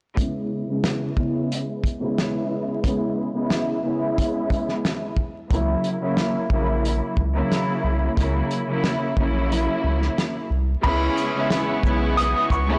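A lush, bowed studio string section with smooth vibrato provides the accompaniment in this gritty, tough boom-bap hip-hop excerpt at 90 BPM in C# dorian, riding a filter sweep over a fat-snared soul drum kit whose kick drops out at 9.5 seconds, while a round, deep analog bass with tube saturation enters at 5.5 seconds and a worn, slightly detuned upright piano melody arrives at 10.8 seconds alongside distant horn stabs with tape echo and background symphonic strings with portamento, all under a blown-out, overdriven sound with vinyl crackle and small-room ambience.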